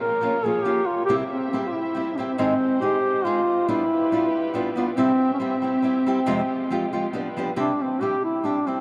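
Moving in a straight 3/4 at 139 BPM, this short fragment of a longer mariachi-flavored folk piece feels both romantic and festive. A mellow duduk carries the melody up front as a solo voice, its smooth top lending the folk-style line a gentle sheen. Beneath it, a fingerpicked nylon-string guitar enters at 0.2 s with a small, warm acoustic tone, also sitting close in the mix. A muted studio violin section plays sustained, bowed chords with soft attacks and vibrato; the con sordino ensemble sounds dark and veiled, set distant behind the other parts, and drops out at 7.6 s as a brief new section begins. The harmony moves through Bbm, C, Ab, G7, C, Fmadd9 and G7 before settling on C, and a wet cathedral reverb places the whole performance in a vast, echoing space.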